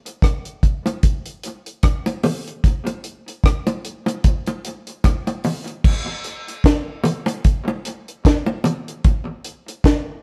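Warm and laid-back, this short reggae cut from a longer piece moves at 75 BPM in 4/4 with a swung sixteenth feel, as a dry, dark, up-front drum kit with a high-tuned snare, tight kick, rim clicks, hi-hat and crash cymbal plays from 0.1 to 10.1 seconds, joined by round, low-tuned bongos struck with hard hands and treated with tape echo, sitting lower in level, from 0.9 to 8.9 seconds, all captured like a band playing live in one room with light reverb.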